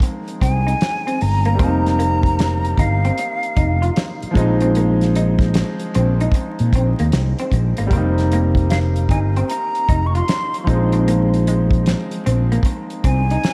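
An airy, close-miked jazz flute with vibrato and chiff carries the melody through tape echo from 0.4 seconds in this sultry, smooth neo-soul R&B excerpt, over a growly, up-front fretless bass, a damped 70s drum kit with a fat snare, tight kick and rolled-off top, a clear concert grand piano with long sustain, and a slightly broken-up, lo-fi electric guitar with analog chorus playing a second line, as the swung groove moves between suspended ninth chords in a dreamy mix soaked in plate reverb and vinyl crackle.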